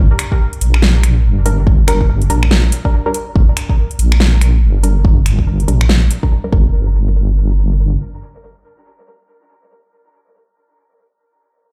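A deep, soft wobble bass opens this dark, meditative excerpt of deep dubstep, its detuned sawtooth and sine tones sitting up front with a chorused, compressed weight on a G minor chord. Within the first second a dubstep drum kit of finger snaps, metallic hats and a huge snare arrives alongside an up-front electronic kick, moving in a swung half-time feel. From 1.5 seconds a muted, filtered dub chord stab joins with a plucky fast attack and short decay, carried by chorus, cassette tape coloring and dub echo while a filter sweep runs across it. The drums and kick fall away by about 6.6 seconds, leaving the bass and stab together until 8.0 seconds and then the stab alone until 11.1 seconds. The whole mix is set in a large studio reverb, like a big sound system played in a bare room.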